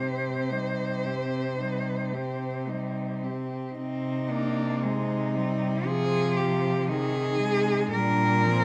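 This classical passage for a cello ensemble is lyrical, yearning and solemn. It moves at a slow 54-59 BPM in 4/4, with a rubato feel in C minor. Four bowed cellos, each played by one player, sound together throughout, with the lead cello carrying the melody between D4 and C5 in a rich, focused tone with vibrato, set up front. Beneath it, a second cello sings a smooth inner line, a clear-toned cello supplies even accompaniment with vibrato in the middle register, and the bass cello holds the low end close and present with only light vibrato. The phrase is stated and then returns at 3.8 s, resting on C minor before shifting to G minor over Bb at 7.9 s. Close, detailed microphones and light reverb give the ensemble an intimate, chamber-like presence in this short cut from a longer piece.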